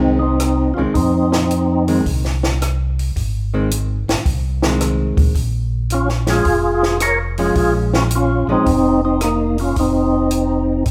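A fat, lightly overdriven tonewheel organ opens this bluesy, soulful soul jazz organ trio fragment with a percussive melody through a slow rotary speaker and chorus vibrato. It arrives over a round, dark organ bass line with key click and a clean, hollow-body archtop guitar comping, as a dry cocktail drum kit with a punchy kick and high-tuned snare joins at 0.4 seconds. The lead drops out and returns at 5.9 seconds, the guitar stops at 8.7 seconds, and the swung band plays live in a moderately reverberant large studio over Fm7, Bbm7 and F7(no3) chords.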